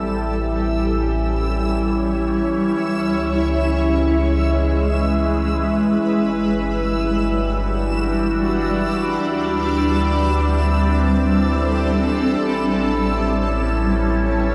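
Heard in a vast, echoing space with a long cathedral reverb of 4.6 seconds, this ambient passage drifts in free time with a spacious, reflective mood. Up front, a shimmering, ethereal pad holds sustained chords with slow attacks and long releases, its granular triangle tone lifted by an octave-up shimmer and colored by chorus and phaser. Beneath it, a deep, round sine sub bass also sits up front, while a resonant drone blends sawtooth and sine tones into evolving, moving overtones treated with chorus. High above, a faint reversed texture on E6 adds a dreamy, detuned, swelling glow, sitting low in the mix under its own shimmer reverb. All four parts sound throughout this 14.5-second stretch, cut from a longer piece, as the harmony moves from A7 through C#m7, Gmaj7 and D7sus4 back to A7.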